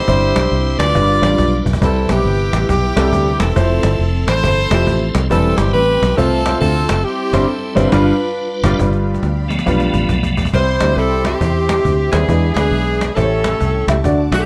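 Lightly reverberant and close, this jubilant, soulful uptempo gospel fragment in C major swings at 138 BPM, led by a tight, bright saxophone section carrying the melody up front over a woody upright piano, a round, foam-muted fingered electric bass and a snappy, vintage-sounding cajon played with soft hands. A piping tonewheel organ with key click, light overdrive, chorus vibrato and slow rotary speaker holds sustained chords in the background, adds a fill and takes a short solo from 8.8 s, when a dark, lush bowed string section quietly enters behind the band after a full-band accent. An overdriven slide guitar joins the melody at 10.6 s, with a very quiet, clean, compressed electric guitar adding a brief second line as the chords move through C, E7 and A7.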